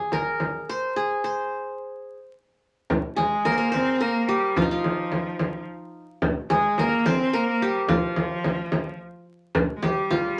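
A straight 6/8 pulse at 72 BPM, felt in dotted quarters, drives this hypnotic, melancholic Arabic maqam ensemble excerpt, where a deep, large frame drum with a vintage, band-limited character sits up front from the opening moment and the whole group halts in a stop from 1.2 to 2.9 seconds. The fingerpicked qanun carries the melody between Eb4 and C5, its triple strings giving a bright-edged shimmer, while a single bowed cello enters at 3.2 seconds with a smooth, even second line between F3 and C4 and a light vibrato. The tuning rests at A4 = 438 Hz, and the parts sit in a wet studio ambience under a layer of vinyl crackle.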